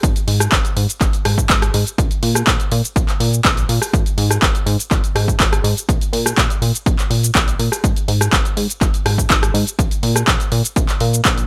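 This excerpt of filtered disco house moves at 123 BPM in a straight 4/4, with an overdriven electronic kick drum sitting up front from 0.0 to 11.4 seconds. A punchy analog drum machine runs alongside it for the full 11.5 seconds, adding handclaps, hi-hat, rim click and shaker, all overdriven and re-recorded in a large room, with sidechain pumping on the percussion and the hats. Beneath them, a plucky analog bass spans Ab1 to Bb2, its sawtooth, pulse and triangle tones shaped by ring modulation and a fast-attack filter pluck that decays into a mellow, evolving funk. Tube saturation and sidechain pumping give the bass its bounce. The mix stays nearly dry, and the mood is nostalgic and funky throughout this single short section.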